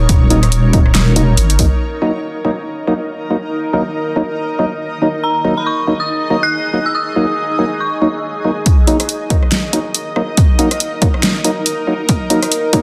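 Deep dubstep in Eb minor at 140 BPM with a swung, half-time feel, dark and heavy, cut from a longer piece that opens on a drop where a deep, wobbling bass with chorus, a punchy overdriven kick and a layered kit with a fat snare, claps, hi-hat and rim click sit up front until 1.7 seconds. A blurred, evolving granular cloud pad holds sustained chords throughout, while a hollow, percussive organ stab with analog chorus and dub echo runs from 0.3 seconds on, and an eerie, inharmonic detuned synth bell with phaser and dub echo plays its high melody briefly at the start and again from 5.2 to 8.4 seconds. The kick and kit return at 8.7 seconds for a build-up, all set in a moderate echo chamber and a dense, heavily limited modern master.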